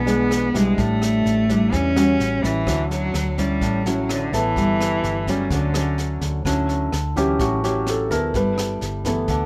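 Sophisticated and sunny, this bossa nova excerpt opens with a bowed cello carrying the melody, its tone focused and smooth on top with vibrato, set up front beside a full-bodied, thumb-plucked nylon-string guitar. Underneath, a dark, round hollow-body electric bass and a small-room brush kit with a high-tuned snare, boomy kick and rim clicks keep the straight groove moving. The cello bows out at 6.2 seconds, and a natural-sounding baby grand piano with short sustain takes a solo from 7.2 seconds, all within light reverb.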